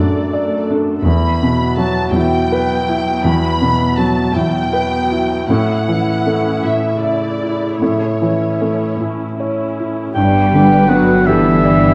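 In a slow, rubato 6/8 that moves at about 50-55 BPM in dotted quarters, this sorrowful, bittersweet cinematic score unfolds in E dorian and is cut from a longer piece. From the start, a con sordino violin section carries the melody with veiled, lush vibrato, while a felt-muted upright piano sits up front with a soft, intimate accompaniment. Con sordino violas fill the middle, and a cello section with a smooth top supplies the bass. The harmony drifts from D/F# to Emadd9 and then to A. At 10.2 seconds, over a G chord, the texture blooms: a clear solo oboe steps forward with a second line, joined by a quieter studio violin section in the background. Around them, a very quiet French horn section holds soft-edged chords, a concert harp rings out arpeggios from behind, and a double bass section settles onto a low G1. A moderate scoring-stage reverb surrounds the ensemble, and the production stays dark and warm throughout.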